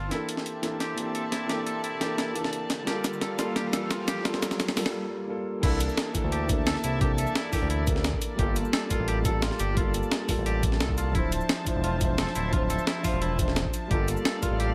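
A dark, worn grand piano sits up front with a gritty 12-bit sampler texture and dub echo, joined by reedy, distant strings pumping under sidechain compression and a bright, twangy electric guitar picking arpeggios through tape echo in this dreamy, rolling liquid drum and bass excerpt. A pitched-up, compressed breakbeat kit with a medium-tuned snare, hi-hat, shaker and crash builds with a drum fill and an electronic riser until a short break at 4.9 seconds. At 5.6 seconds the drop arrives, as a thumpy kick and a smooth, nasal, detuned synth bass with vibrato and tube saturation settle beneath lush extended chords in light digital ambience.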